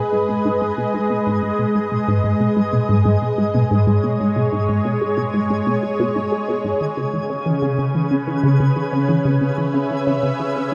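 A squelchy, resonant blip pluck drives a riff with phaser, delay and a filter sweep over a lush, detuned unison pad of chorused sustained chords, while a twinkling granular texture fades in far in the background, all within this hypnotic, cosmic ambient space music at 92 BPM in G# minor, moving from G#m to C#m7 at 7.0 seconds and bathed in a huge, wet reverb.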